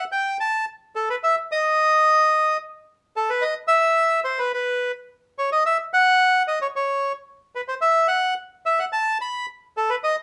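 Tango in a tense, melancholic mood, this short excerpt features a solo bandoneon, reedy, bright and airy, placed up front and played with a free rubato feel in 4/4 across its 10.2 seconds, set in a moderate club reverb.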